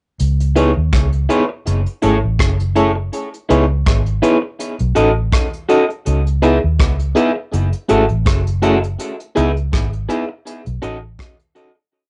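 A dark, round, foam-muted electric bass sits up front, playing a melodic reggae line with slides from 0.2 seconds in this bittersweet, longing lovers rock piece in C# minor at 82 BPM, with a gentle swing on the sixteenths. Soft brushes on an acoustic kit carry a one-drop groove, the punchy kick and rim click landing together on the backbeat while beat one stays empty, and the hi-hat ticks along. From 0.6 seconds a mellow FM electric piano with tremolo and a faint noise layer chops the off-beats, while a slightly broken-up electric guitar through a small old amp enters at the same moment with its own off-beat stabs, both carrying tape echo. The harmony moves from C#m7 to F#m7, back to C#m7 and on to a rootless B7, then repeats. Light reverb and a cassette-tape haze give the home recording a soft, dulled top, and the whole piece fades out from 9.0 seconds to its close at 11.9.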